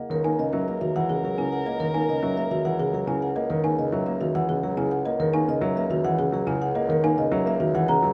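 Closely miked with light reverb, this brief cut from a longer minimalist classical piece moves at 106 BPM in 3/4 over a C#m69 chord in C# dorian, its meditative yet urgent pattern built from a dark, vintage grand piano up front, a round soft-mallet marimba melody, woody, rustic folk marimba and bell-like, delicate celesta arpeggios, a low bassoon with light vibrato, and a smooth soprano saxophone line that sounds only until 3.3 seconds.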